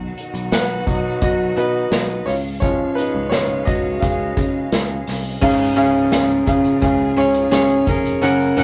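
A clear, intimate baby grand piano sits up front and leads this uplifting, warm piano-driven pop excerpt, entering at 0.5 seconds and taking a featured solo role through the opening section, with the natural sound of its action audible. The tempo is a steady 86 BPM in a straight 4/4, tuned to A4 = 436 Hz, and the harmony moves from B to C#. Beneath it, a picked electric bass adds a growly, foam-muted low end. An acoustic drum kit played with bundle sticks sits up front with dark cymbals, a medium-tuned snare, a punchy kick and hi-hat, plus crash accents. A lush, bowed string section sustains chords with vibrato from the distant background. A very quiet, jingly tambourine joins from a large room at 5.4 seconds as the music moves into a new section. The recording has the rough character of a rehearsal room, with tube saturation and a moderate studio ambience.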